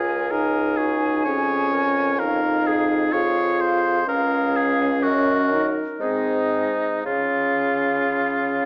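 Warm and lyrical, this slow, rubato classical wind-quintet movement in 3/4 at 56-64 BPM in Db major features a pure, tongued concert flute singing the melody with vibrato, an up-front oboe shaping the second line, a mellow, roomy French horn with light vibrato and a distant clarinet in the background filling the accompaniment, and a vibrato-tinged bassoon holding the bass, all heard through a wet recital-hall reverb with a small-speaker sound in this 8.7-second excerpt cut from a longer piece.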